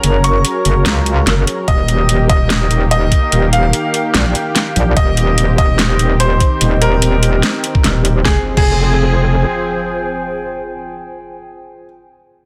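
This menacing, chaotic heavy wobble dubstep fragment opens at once with a brilliant grand piano melody carrying tape echo, set over a lush, detuned sawtooth pad and a metallic, aggressive FM wobble bass that sits up front, saturated and driven with overdrive and chorus. A half-time, swung drum kit pushes a huge snare, metallic hats and crashes forward, and a knocking, layered electronic kick joins at 1.7 seconds. Beneath it all, a warbly, nostalgic tape-like pad adds lo-fi shimmer in the background through chorus, phaser and its own reverb, while both pads pump against the sidechain. The harmony shifts through Gb, Eb and Cm/Eb before settling on Fm as a faint electronic impact arrives and the drums drop out at 8.7 seconds. The bass stops at 9.4 seconds, leaving piano, pads and the fading impact to ring on in a dense, heavily limited mix with light reverb.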